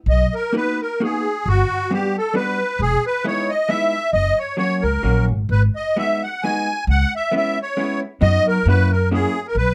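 A lilting, swung three-beat lilt with rubato carries this whirling, charming musette waltz fragment, where a reedy, shimmering accordion in musette tuning leads the melody up front over a woody, pizzicato upright bass and a dark, clean, picked hollow-body electric guitar that enters at 0.5 seconds with compressed accompaniment, moving from Bmaj7 through Gmaj7 and Emaj7 to an F#7 turnaround at 8.6 seconds, all set in light reverb.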